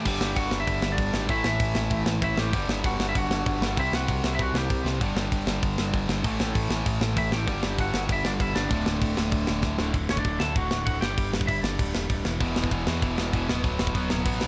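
A lightly reverberant studio sound puts a tight acoustic drum kit up front, its medium-tuned snare and tight kick carrying a mid-forward, rolled-off tone in this rebellious, energetic punk rock excerpt cut from a longer piece. At 194 BPM in a straight 4/4, two rhythm guitars drive the riff together: an overdriven part sitting warmly in the background, and a tight, trebly, distorted one that drops out at 9.9 seconds before returning. Underneath, a growling picked electric bass, recorded direct and amped with overdrive, gives a punchy low end. A twangy, slightly broken-up lead guitar, compressed and coloured with tape echo, plays the melody in two phrases, pausing at 4.9 seconds where the drums play a fill. The chords move mostly between G5 and A5 power chords before a second section begins near 9.9 seconds, touching E5 and closing on Bm/D.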